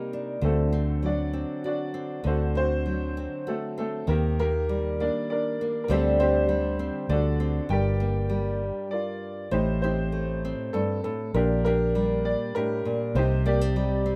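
In a straight 3/4 pulse at 99 BPM, this reflective, intimate acoustic folk-pop ballad in G minor unfolds as a short cut from a longer piece. A woody, slightly detuned upright piano carries the melody between A3 and G5, its vintage tone touched by tape echo. A bright, fingerpicked nylon-string guitar supplies classical-flavoured accompaniment from G2 to G4, while a dark, round, foam-muted electric bass joins at 0.4 seconds, sitting a little louder and up front in the low register. The harmony drifts through D7, Ebmaj7, D7sus4 and D7 before settling on Gm7, then the band halts briefly from 8.9 to 9.5 seconds before the phrase begins again over Am7b5, Gm/Bb and Cmadd9. A moderate studio reverb and a rough home-demo mix keep the sound close and unpolished.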